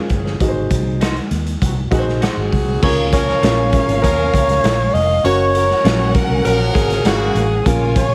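An alto saxophone carries the melody from 2.2 seconds, its pop-style vibrato tinged with tape echo, over an uplifting, joyful slice of uptempo 1960s-style soul in a straight four. Beneath it, a gritty, saturated garage drum kit sits up front with a punchy kick, a medium-tuned snare, hi-hat and crash, its top rolled off in a bright stone room, while a round, foam-muted fingered electric bass adds a dark, amped pulse. A woody upright piano with audible action noise and long sustain supplies accompaniment, and a jazz-style horn section with a smooth top plays a second line from the start. A twangy, slightly broken-up electric guitar through a small old amp adds picked stabs in the background, and a lush, bowed studio violin section joins with its own second line at 2.8 seconds as the harmony moves through Ab7, Db6 and Gbmaj7. Light reverb and a heavily compressed radio sound frame this short excerpt.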